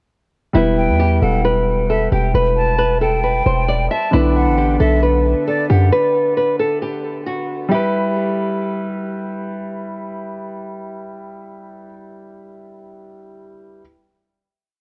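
A hard-hitting 808-style bass drives this menacing, melancholic hip hop piece at 134 BPM in a half-time feel, its punchy, heavy sub-bass notes sliding in pitch until it stops at 5.9 s. Up front, a dark, fingerpicked nylon-string guitar loops an E minor melody through tape echo until 9.0 s, over held, open-voiced grand piano chords with deep bass and long sustain, while an airy, hollow flute adds a sparse counter-melody with vibrato. The hook moves from Em to Bm before settling on a final Em chord at 7.7 s, the whole piece coloured by worn, warbling cassette tape and a light small-room reverb.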